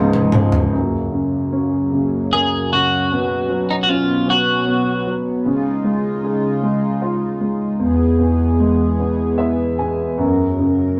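A swaying, romantic six-eight pop ballad in F# major at 51 BPM, this excerpt opens with a brief tom fill and a fleeting fingerpicked steel-string acoustic guitar arpeggio alongside a clear, deep-bassed concert grand piano and a shimmering, retro pulse-width pad that carry the chords through to 11.0 seconds, while a bright, compressed twelve-string electric guitar sings the melody from 2.3 to 5.1 seconds and the piano adds a fill near the end, all set in a rough rehearsal-room recording with wet studio reverb.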